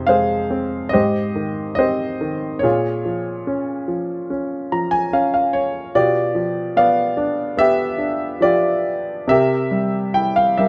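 A clear, natural concert grand piano sits up front in a light reverb, its deep bass and short sustain giving each chord a close, intimate presence. This is a peaceful, warm piece of lyrical classical solo piano in 4/4, played with a gentle rubato that lets the pulse breathe. The piano moves through Fm7, Abmaj7 and Bbm7 before settling on G7/B and then C7, with the harmony spread across a range from F2 to Bb5. From 4.3 to 6.0 seconds a short fill decorates the line between chord changes. The passage is cut from a longer piece and lasts 10.7 seconds.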